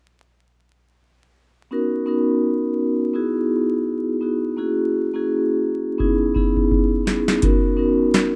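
A mellow, ringing vibraphone played with soft mallets carries this gritty, reflective boom-bap hip-hop excerpt at 84 BPM with a swung feel, moving through Bmaj7, Emaj7, F#7 and C#m7 from 1.7 seconds before a booming analog drum machine with deep kick, crisp snare and metallic hats arrives at 6.0 seconds with a fill, all set in a rough home demo mix with digital ambience, vinyl crackle and faint mains hum.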